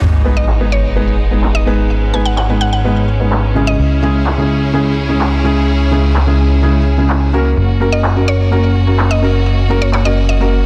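Powerful and euphoric, this festival progressive house excerpt opens on a sub drop impact over a fat, detuned analog bass that sits up front, while a clear studio string section holds sustained chords beneath a soft, felt-muted upright piano whose delayed accompaniment carries audible action noise. A woody, round synth pluck with chorus and delay carries the melody from 0.4 to 3.8 seconds and returns at 7.9 seconds. A layered big-room drum kit with overdrive adds handclaps, shaker and filtered hi-hats under a dense, heavily limited master with light reverb.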